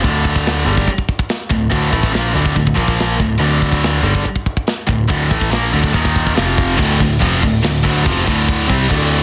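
Heavy metal at 142 BPM in D minor, epic and crushing, with two picked high-gain guitars (one sitting in the background) churning out the riff over a bell-like, clean tine electric piano that carries the bass line. A tight, up-front acoustic drum kit with a warm, rolled-off top and a softly clipped kick drives the straight 4/4 through moves from Dm to Bb5, Eb5 and F5. At 6.8 s the groove drops into half time as a double-tracked distorted guitar joins in the background, all in a small room and a dense, heavily limited modern master.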